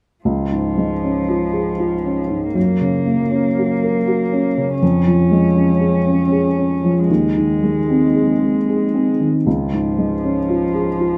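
In a rubato three-four sway, this hopeful, tender fragment of neoclassical piano and strings sets a felt-muted upright piano, soft, boxy and up front, as accompaniment alongside a single con sordino cello whose veiled, bowed second line carries light vibrato, the pair placed in a moderate large-studio reverb over a gentle progression that comes back to its opening chord at 9.5 seconds.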